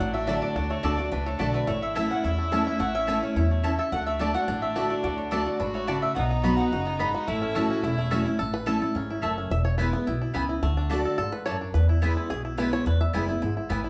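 Bluegrass with a rustic, lively spirit, this cut from a longer piece moves at a brisk, straight four-beat pulse. Banjo, mandolin and clear fiddle open together, the twangy, fingerpicked banjo and round, double-strung mandolin carrying the melody while the fiddle, bowed by one player with light vibrato and an earthy tone, adds a second line. Underneath, a picked dreadnought steel-string guitar and a woody, thumpy upright bass on gut strings sit up front, the bass plucked with a dark low end. A second mandolin punctuates throughout with short stabs. At 8.4 seconds the fiddle drops out and the bright, percussive five-string banjo takes a solo over the remaining bars, shortly after the first mandolin falls silent. A generous studio reverb places the group further back in the room, giving the ensemble an airy sense of space.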